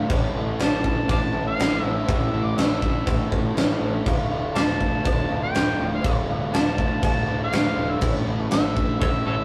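A huge arena drum kit drives a straight 4/4 at 121 BPM, its fat snare and punchy kick sitting up front in a big natural room, with a metallic cowbell ringing very quietly beside it from 0.1 s. This is a gritty, driving slice of classic rock in D harmonic minor, cut from a longer piece and moving from A to Dm and back to A. A growling picked electric bass with overdrive stays in the background, bright and punchy. A crunchy overdriven guitar plays a riff, and a very quiet overdriven electric guitar plays a riff as well, while a boxy old ladder-braced acoustic guitar is picked faintly underneath with an occasional finger squeak. At 0.6 s an amplified, overdriven harmonica takes the solo melody, full of light vibrato and tongue slaps in a pop style. The rough rehearsal-room sound carries moderate studio reverb, and the drums drop out at 9.1 s while the rest play on.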